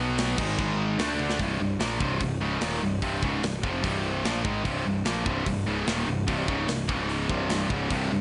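A straight 4/4 pulse drives this dark, heavy metal excerpt, with a bright, up-front high-gain guitar riff stacked over an overdriven guitar riff in the background and a growly, fuzz-laden picked bass. A very quiet, double-tracked fuzz guitar adds a murky, compressed riff only until 1.4 seconds, while a tight acoustic drum kit with crisp cymbals, a medium-tuned snare and a firm kick sits forward in a big-room sound, rolling through a fill at 1.2 seconds as the harmony moves from Ab5 and D5 into Cm. A small room ambience frames the recording, its top end softened.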